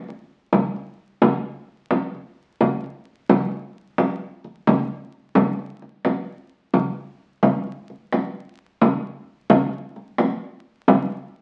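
Hypnotic and pensive, this short contemporary instrumental piece is cut from a longer work and built entirely on a lone frame drum. The pulse runs at 261 BPM counted in eighths, in a straight 9/8 metre that gives the cycle a circling, meditative pull. The frame drum carries the percussion from 0.1 s to 11.1 s, its acoustic tone warm and placed close and up front, dry in character. Around it sits a wet studio reverb of modest length, and the whole sound carries the patina of a very old 78 rpm record, with vinyl crackle hovering underneath. Around 5.4 s the music moves into a new section, which carries the drum's meditation to the end.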